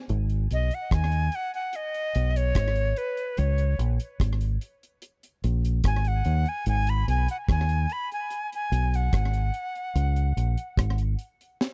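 A breathy, bright jazz flute takes the solo, its vibrato and reedy edge wrapped in tape echo as it moves between B4 and B5 over a serious, meditative roots reggae groove at 73 BPM in G# minor. Beneath it, a round, dark fingered electric bass sits up front alongside an acoustic drum kit with a tight kick, high-tuned snare, rim click and hi-hat, touched with slapback echo, while the chords alternate between G#m and C#5. The dry, close 1970s-style studio sound carries little reverb, and this cut from a longer piece runs about 11.7 seconds.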